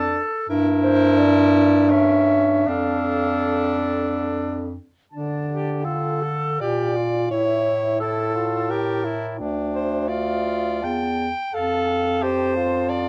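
A classical, lyrical fragment for single-reed quartet in a rubato 3/4, yearning and elegiac, where a dark, distant clarinet carries the melody from the background over a bright, up-front alto saxophone second line, a clear tenor saxophone accompaniment and a warm, vintage bass clarinet bass, all heard through a moderate studio room on worn, warbling cassette tape with pitch drift and lossy artefacts, the harmony moving from diminished colours to plain minor and major chords, with a new section beginning at 5.1 seconds.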